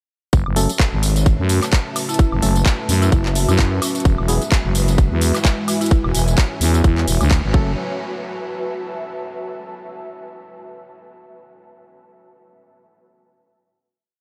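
A bouncy, aggressive bass house piece with a swung sixteenth feel opens straight into a drop at 0.3 seconds. A tight, up-front electronic kick holds four-on-the-floor while a garage kit adds claps, tambourine, woodblock and metallic hats at a lower level. A growling, thick FM bass sits prominently in front with chopped phrases, ducking under a sidechain pump alongside a deep, moody analog pad that holds sustained chords in the background. Very quiet, hollow organ stabs drop sparse echoing chords, and a woody marimba with a gritty sampler tone and analog delay plays short answering phrases from 2.1 to 6.9 seconds. An ethereal, airy pad with tremolo and ensemble chorus drifts through slowly shifting chords, carrying alone into a final chord from 7.8 seconds after a band accent at 7.3 seconds, all set in light digital ambience.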